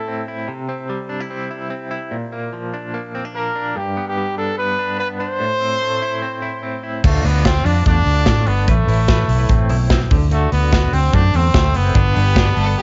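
This short cut from a longer piece has the sound of a home cassette recording in a small room, with its top end rolled off above 7.7 kHz. It is jangly indie pop at 146 BPM in a straight 4/4, bright and youthful in mood. A twangy, clean electric guitar recorded direct plays picked arpeggios throughout, colored by tremolo and tape echo. A clear trumpet with light vibrato carries the melody from 3.3 seconds, roomy yet up front. At 7.0 seconds a round, foam-muted fingered bass and a punchy acoustic drum kit with bright cymbals and a medium-tuned snare arrive together under chords moving from Dm through Amadd9 and D7. Just before the cut, a lush bowed violin section slips in as a distant second line over a G chord.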